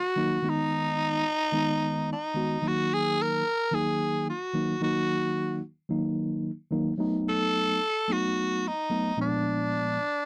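A raspy, growling tenor saxophone opens this soulful, smoky blues fragment at 110 BPM, its bright, gritty solo melody carrying vibrato and sitting up front in a jazz style over a lightly swung 4/4 in E-flat harmonic minor. A mellow tine electric piano enters at 0.2 seconds with clean, direct accompaniment through chords moving from Abm to Ebm, then B7 and Bb7b9. The close, dry 1970s-style studio sound carries a light reverb, and the fragment ends at 10.3 seconds.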